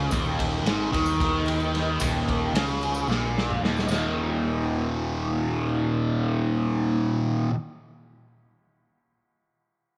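Running in 7/8 at 223 BPM counted in eighths with a straight feel, this dark, hypnotic psychedelic rock excerpt, tuned to A4 = 444 Hz, centres on an Eb5 riff from a double-tracked, distorted fuzz guitar with phaser sitting up front, with a round, overdriven picked electric bass beneath it, while a gritty, punchy garage drum kit in a bright stone room and a jingly tambourine in the background drive the opening; the kit plays a fill from 3.1 s before both drop out around 4 s, leaving guitar and bass alone under light studio reverb until the cut at 7.5 s.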